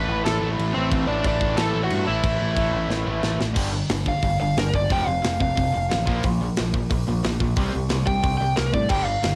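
Rowdy and energetic, this short punk rock cut charges along at 180 BPM in a straight 4/4, with a cassette-taped home-recording sound and little reverb. Up front, a warm, overdriven semi-hollow guitar carries the melody from C4 to B5, while two picked rhythm guitars sit in the background, one distorted and one overdriven, both bright and grinding out riffs between F2 and C4. A growling, picked electric bass with overdrive anchors the low end from F1 to A2. The tight metal drum kit, punchy and forward with bright cymbals, a medium-tuned snare and a snug kick, comes in at 0.3 seconds, holding a half-time feel before a fill from 2.9 to 3.6 seconds. From 3.6 seconds the overdriven electric guitar takes a solo as the chords move through G5, F5, Bb5 and C5.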